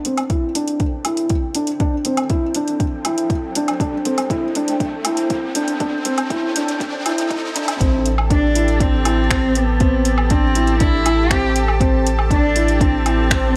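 A moderate concert-hall reverb with a digital sheen surrounds this hypnotic, melancholic piece of piano and strings electronica in A minor, cut from a longer track and moving at 120 BPM in a straight 4/4 over a single Am7 chord. Up front, a felt-muted upright piano plays a soft, boxy riff between C4 and E4, its thick felt and audible action noise giving it an intimate, dark quality, with digital delay and shimmer reverb trailing behind. A deep electronic kick and a tape-tinged deep house kit of finger snaps, metallic hi-hats and woodblock carry the groove, while a lush, detuned sawtooth-and-square unison pad holds slow-attack chords coloured by chorus, phaser, shimmer reverb and sidechain pumping. The opening build-up pairs an electronic riser with a filter sweep on an analog synth pad until the drop at 7.8 seconds, where a round, dark analog bass enters on A1 with its own pumping motion. 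At 8.3 seconds a single bowed cello joins with a warm, expressive line between B3 and G4, shaped by vibrato and portamento and bathed in shimmer reverb.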